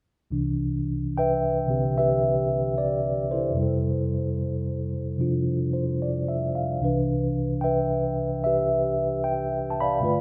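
Late-night and intimate, this short jazz ballad excerpt moves at an unhurried 74 BPM in 4/4 with a gentle swing, set in C major. A mellow tine electric piano plays alone, up front and clean, its tone heard through its own built-in speakers, spanning a range from low bass to bright upper notes as it moves from Cmaj7 to Fmaj7 and back to Cmaj7 at 6.8 seconds. A moderate plate reverb lends a soft halo that lingers around the instrument.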